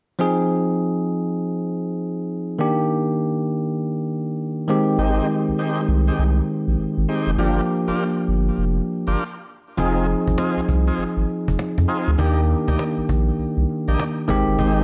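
Swung sixteenths at 100 BPM in 4/4 give this slick, confident new jack swing cut its strut, set in F dorian and taken from a longer piece. A bell-like tine electric piano opens alone, bright and up front, laying down the chords as the harmony moves from Fm7 through Ebmaj7 and Abmaj7 to Gm7. At 5.0 seconds a round, deep analog bass arrives with a fast attack and sustained notes, alongside thick tonewheel organ stabs that are lightly overdriven and turned by a slow rotary speaker with delay. A brief stop at 9.2 seconds clears the air before the next section starts at 9.8 seconds, where a snappy, close acoustic cajon with snares joins the groove. A moderate echo chamber reverb wraps the whole in a dark, warm production.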